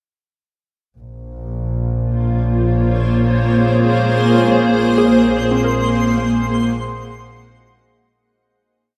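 A bowed double bass section holds a rich, floating root from 1.0 seconds in this spacious, melancholic ambient piece, joined at 2.3 seconds by an up-front granular cloud pad of blurred, detuned, slowly shifting chords, then at 5.0 seconds by soft, round, chorused pluck arpeggios drifting in three unequal loops in the background, and at 5.2 seconds by a sparkling granular shimmer on a held high note, all bathed in a lush hall reverb as the music fades out.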